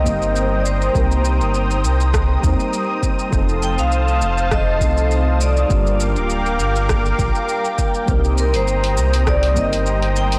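Sunset chillout with a wistful, smooth mood, cut from a longer piece and moving with a gently swung sixteenth-note feel in 4/4. A vibraphone played with medium hard mallets carries the melody, its metallic, ringing tone close-miked and dry with a medium motor vibrato and a touch of digital delay. Soft electric-piano-like synth keys supply mellow, decaying accompaniment colored by chorus, phaser and delay, while a lush unison pad holds bright, thick detuned chords with a slow attack and long release. A round analog bass sits dark and up front with transformer saturation, and at 0.1 seconds a deep house drum kit of hi-hat, rim click and shaker enters together with an overdriven electronic kick, both re-recorded in a small room, with the kick dropping out at 9.7 seconds. The chords cycle from Cm7 through F7 and Gm7 back to Cm7, and the whole recording has a blown-out, overdriven sound with light reverb and digital ambience.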